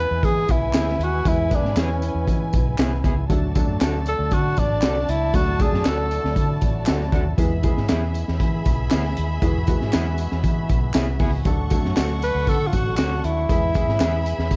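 A straight 4/4 groove at 118 BPM drives this joyful, danceable slice of uptempo 1960s-style soul in E mixolydian, rocking between E and D chords. A crunchy breakbeat kit with a high-tuned snare, tight kick and hi-hat sounds gritty and saturated with a rolled-off top, while a round, foam-muted fingered electric bass holds down the low end and close group handclaps with tambourine add sparkle. A breathy tenor saxophone sits up front with the melody, mellow and jazz-inflected with scooped notes, light vibrato and a slapback echo, pausing after 6.6 seconds and returning at 12.2 seconds. Behind it, a lush bowed string section carries a second line, a slightly broken-up guitar through a small old amp adds picked stabs with subtle chorus, and a very quiet, lightly overdriven tonewheel organ with key click sustains chords. A woody, slightly detuned upright piano comps in the background and steps forward with a brief fill at 10.7 seconds, all wrapped in dark, warm studio reverb in this short cut from a longer piece.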